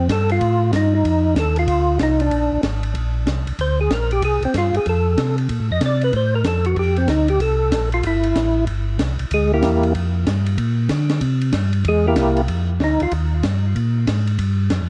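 A fat, percussive tonewheel organ carries the melody over a round, dark tonewheel organ bass line from the first second, both up front with a slow rotary speaker and key click, while an open acoustic jazz kit of dark cymbals, high-tuned snare, boomy kick and hi-hat sits lower beneath them in this greasy, soulful soul jazz organ trio cut from a longer piece, swinging at 189 BPM in 4/4 over chords like F13, Bb13 and C13, the lead colored throughout by chorus vibrato, plate reverb and analog delay before it stops at 13.1 seconds, all heard through the worn, warbling pitch drift of an old cassette tape in a lightly reverberant studio room.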